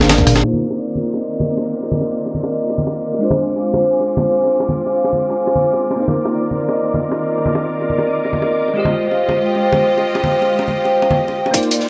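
A short drum fill from a gritty, pitched-up sampler-style breakbeat kit, a dark, saturated second breakbeat kit and a tight, layered electronic kick opens this melancholic, soulful liquid drum and bass excerpt at 173 BPM in C minor; the drums then drop out until they return at 11.5 seconds. In between, an up-front metallic vibraphone with slow motor vibrato plays arpeggios under a long filter sweep, while a bell-like tine electric piano with ensemble chorus and dub echo supplies the accompaniment, and bowed studio strings pump with sidechain on sustained chords through Cm11, Dm7b5 and Fm9. Ringing, hard-handed congas and bongos carry on beneath, a very quiet downlifter and riser pass through, and a scoring-stage reverb lends the mix a spacious sheen.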